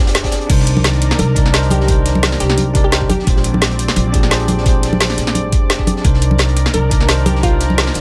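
Rolling and lush, this liquid drum and bass excerpt at 173 BPM in C minor moves from Cm9 to Bb13 and back, with a woody, thumpy pizzicato upright bass up front, a bell-like tine electric piano with tape echo, a warbling detuned unison pad with chorus in the background, a knocking electronic kick, an up-front garage kit with crash, metallic hats and woody snare, a gritty, saturated breakbeat kit tucked behind, hard-handed congas close and dry, and a glassy wavetable pluck with chorus and tape echo that appears at 1.2 seconds and again at 6.7 seconds, all set in a small room ambience.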